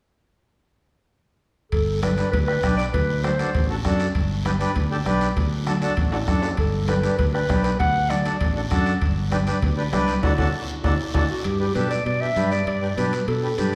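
Heard from further back in a reverberant recital hall, this sunny, danceable cumbia in G major moves at 197 BPM, with an up-front jazz-style clarinet singing phrases full of vibrato and scooped notes over punchy fingered electric bass, reedy, airy accordion, a soft-beater bombo, very quiet ringing congas, a raspy guiro and metal-shell timbales in the background, while drum fills land at 6.1 and 10.8 seconds, the second arriving amid a band accent that carries into a new section at 11.5 seconds.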